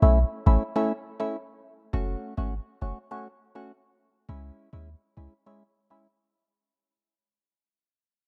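A percussive organ stab and a punchy sub bass sound together from the opening moment of this short dancehall excerpt, cut from a longer piece and set at 102 BPM in a straight 4/4 with a tough, sultry mood. The organ stab carries the accompaniment with a hollow, organ-like tone, its fast-attack hits decaying and colored by chorus and phaser over a wave-folded blend of sine, triangle and a noise layer. Underneath, the sub bass sits deep and up front, each note opening with a pitch-drop attack before holding as a sustained, sine-pure tone until it stops at 5.3 seconds. The harmony moves from A to F#m at 1.9 seconds and on to C#m at 4.3 seconds, while the organ carries on until 6.1 seconds. A fade-out runs across the whole passage, and the dark production is touched with light studio reverb.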